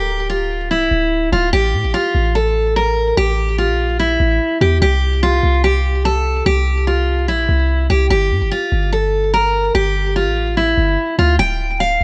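A bright, fresh-stringed steel-string acoustic guitar carries the melody up front, its picked lines softened by a low-pass filter and trailed by delay, in this brooding, dark hip hop passage with a half-time feel. Beneath it, a deep, boomy 808-style bass with a fast attack and decaying tail holds the low end throughout. Meanwhile, the harmony moves from Dm7 through A5 and C5, settles into an unharmonized stretch at 8.1 seconds and returns to Dm at 11.4 seconds. Light reverb gives the short section a sense of space.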